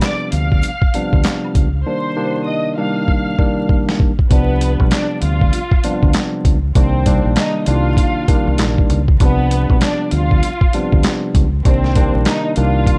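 Tough and moody, this boom-bap hip-hop excerpt in C minor rides a swung 98 BPM groove of gritty, pitched-down sampler drums with a thumpy kick and high-tuned snare, a round, punchy fingered electric bass entering at 0.3 s, a clean tine electric piano colored by cassette tape, a distant, lush violin section carrying the melody with vibrato, portamento and digital delay, and a dry tube shaker and woodblock that stop at 1.7 s, set in a dark production with vinyl crackle and little reverb, with a drum fill arriving at 3.1 s.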